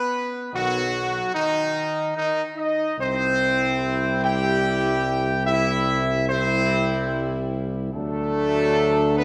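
In a straight 3/4 at 73 BPM, this solemn, triumphant classical brass excerpt sets a dark, smooth-topped trumpet section carrying the melody up front over bright trombone chords, joined at 0.5 s by a tight, warm French horn section and a mellow solo tuba bass, all three lower voices with light vibrato, as the harmony moves from B to C at 3.0 s and D at 7.9 s inside a wet scoring-stage reverb.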